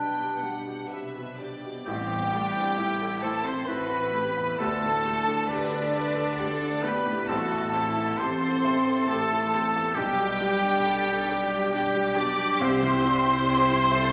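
A felt-muted upright piano, soft and intimate with audible action noise, carries the accompaniment in this sorrowful, moving film-score excerpt for orchestra, set in A minor at 67 BPM in a rubato 3/4. Above it, a focused chamber violin section holds the melody in the background while a lush symphonic violin section sings a smooth second line. Beneath them, a very quiet viola section and a ringing, thumb-plucked concert harp add their parts, and a cello section in the background supplies the bass. A distant, roomy solo clarinet sits up front but is heard only until 1.3 seconds; then at 1.9 seconds an airy, crisp-attacked flute group and a classical-style solo oboe join with second lines, mellow French horns lay down soft-attacked sustained chords, and a far-off double bass section deepens the low end. The harmony moves from G/B through Am7 and Dsus4, returns to Am7 and G/B, and then settles on C, and a wet scoring-stage reverb gives the ensemble a spacious, cinematic glow.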